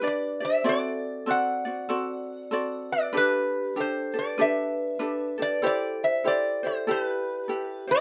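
A lazy swung four-beat lilt carries this languid, dreamy Hawaiian excerpt, where a bright, nasal metal-body resonator slide guitar, fingerpicked and up front, sings the melody over a ringing vibraphone second line struck with medium mallets and shimmering with slow motor vibrato, while a light, fingerpicked ukulele, also up front, picks gently beneath chords that drift from G through D7 and Gadd9 to Am7 in a moderate studio reverb.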